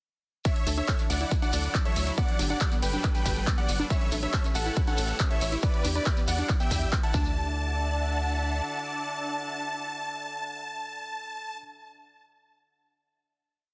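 A huge, detuned supersaw lead carries the melody from 0.5 s, a repeating riff in thirds and sixths that gives this uplifting trance piece in D major its euphoric lift at 139 BPM in a straight 4/4. Underneath, an overdriven electronic kick drives four-on-the-floor, joined by a punchy analog drum machine of hi-hats, ride, high congas and handclaps, a grainy shaker-like shekere in the background, and a tight sequencer bass playing off-beat notes. A round, warbling analog pluck spins a 16-step arpeggio with chorus, tape character and delay, while a lush unison pad with chorus and phaser fades in slowly on sustained chords from 1.0 s. A dark, mellow grand piano sits far back, doubling the lead in unison with digital delay, and the pumping sidechain breathes through the lead, piano, pad, pluck and bass. The drop moves through Dadd9, Gmaj7, A7 and Em7 before the drums and pluck fall away around 7.4 s. 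The bass lingers a little longer, and then the lead, pad and piano ring out over a final hit in a dense, heavily limited modern mix with digital ambience.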